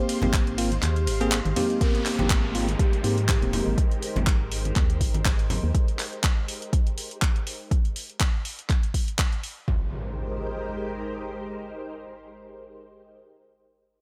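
Deep house with a relaxed, soulful mood, cut from a longer piece: a silky, phased string machine holds mellow sustained chords throughout, pumping against an up-front, overdriven kick that drops out from 0.8 to 1.8 seconds, while bright, bell-like electric piano stabs, a hollow organ-like FM bass, ringing background congas and a very quiet vibraphone with soft mallets fill the opening seconds, an overdriven drum kit of handclaps, hi-hat and ride cymbal runs until 9.5 seconds, and electronic downlifter and impact effects mark the transitions.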